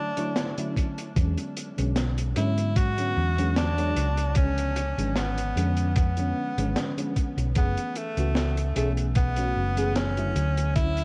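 Vaporwave with a nostalgic, melancholic mood, this short cut from a longer piece sets a clear tenor saxophone melody with vibrato and tape echo over a soft, warbling FM electric piano bathed in ensemble chorus and analog delay, while a crunchy breakbeat kit's hi-hat and high-tuned snare enter at 0.2 seconds, an overdriven, thumpy electronic kick joins at 0.8 seconds, and a round, up-front hollow-body electric bass arrives at 1.2 seconds, all steeped in small-room ambience and cassette tape grain.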